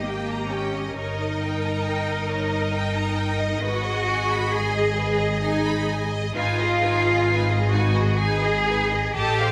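Classical slow romantic movement for string orchestra, elegiac and solemn, moving in a rubato triple metre through a short passage cut from a longer piece. A distant, smooth violin section carries the melody in the background alongside a second violin line that is focused and close, while expressive violas fill the accompaniment, each bowed section rich and full of vibrato. Up front, even-toned cellos and lush double basses anchor the bass, and a wet scoring-stage reverb gives the ensemble its spacious glow.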